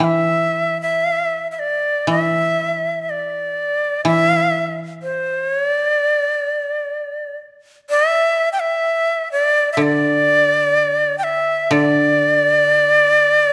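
Set in a moderate concert-hall reverb, this austere, calm fragment of Japanese traditional chamber music drifts in rubato around 62 BPM in 4/4, with a breathy, bright shakuhachi carrying the reedy, vibrato-laden melody up front over a dry, woody koto plucked with fingerpicks in a low accompaniment, both parts sounding throughout the 13.5 seconds.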